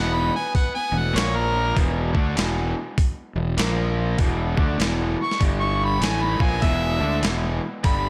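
A clear harmonica with light vibrato carries the melody up front, its overdrive and slapback echo riding over a bright, double-tracked garage guitar riff, a round fuzz bass, a very quiet dark distorted lead guitar line, and a gritty, pitched-down sampler-style drum kit with a thumpy kick entering at 0.5 s, all swinging at 99 BPM in a driving, raunchy blues rock and southern rock groove cut from a longer piece and set in a lush hall reverb for a big arena sound.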